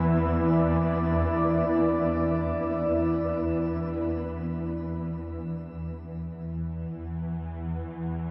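A huge, reverb-soaked haze opens this ominous, vast dark ambient drone excerpt in free time, where a deep, full-bodied pad holds a sustained Dsus2/E chord with a shimmering tail and a flickering, grainy texture hovers just beneath it until both stop at 4.5 s, leaving the swarming, nasal, detuned low drone to carry on alone until 8.3 s.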